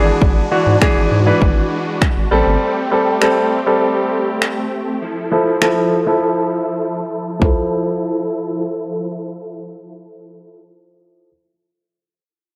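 Dance-pop at 100 BPM in F major, upbeat and carefree, this excerpt opens with a clear concert grand piano carrying the accompaniment and huge, detuned supersaw chords sustained through a phaser, both pumping with the sidechain as a filter sweep runs through the first 7.4 seconds over E7/G#, Am7 and Fmaj7. A thick, saturated sine sub bass is heard only until 2.6 seconds, while an overdriven, layered electronic drum kit with a punchy kick, toms and finger snaps enters at 0.2 seconds and plays through a break from 6.2 to 7.4 seconds, stopping at 7.6 seconds. The gritty hardware sound sits in a lush hall reverb, with every part placed up front.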